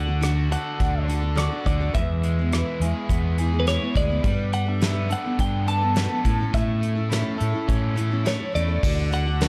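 A straight 4/4 pulse at 104 BPM carries this nostalgic, open-road stretch of folk rock and heartland rock, cut from a longer piece and moving through D, E, Gadd9 and A. A bright, twangy twelve-string electric guitar carries the melody through a phaser over a full-bodied picked jumbo acoustic with fresh strings and audible finger squeak, a double-tracked overdriven electric riff, and an up-front, amped fingered bass. A soft brush kit with a fat snare and tight kick comes in at 0.2 s, and the whole sits in light studio reverb with a dark, warm production.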